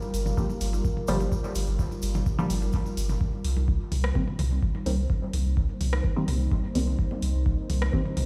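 A steady, straight 4/4 pulse at 127 BPM drives this hypnotic, nocturnal dub techno cut in C minor, where an up-front, tape-warm analog kick anchors a round, soft sub bass that pumps under a muted, detuned sawtooth chord stab drenched in chorus, phaser and dub echo, its filter sweeping from 3.2 seconds as the harmony moves from Gm7 to Cm7, while a dark, slow-blooming unison pad, an overdriven deep house kit of hi-hat and rim click, echoing electronic congas and toms set in the background, and a grainy, distant tube shaker that stops at 3.2 seconds fill out a stone-room sound heard as if through a big sound system in a bare space.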